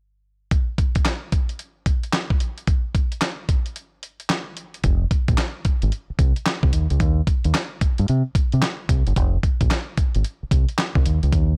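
A dry recording with a faint mains hum carries this bouncy, punchy new jack swing R&B groove in F minor at 111 BPM with a swung 16th feel, where a gritty, compressed sampler-style drum kit with a thumpy kick, fat snare, hi-hat and handclaps starts at 0.5 seconds and breaks at 3.8 seconds before a dark, round fingered electric bass joins up front at 4.8 seconds, in a clip cut from a longer piece.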